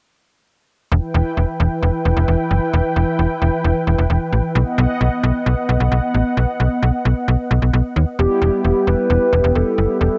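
A dreamy mix soaked in a huge ambient reverb frames this nocturnal, driving pop excerpt in E minor at 132 BPM, where a bold, evolving analog pad with chorus sustains Em and B chords over a snappy, metallic slap-like FM bass from 0.9 seconds. At 8.2 seconds the pad gives way to a hollow, woody clarinet-like synth lead carrying the melody through chorus and tape echo, backed by round, dark synth brass accompaniment with chorus, while the bass continues until 10.1 seconds.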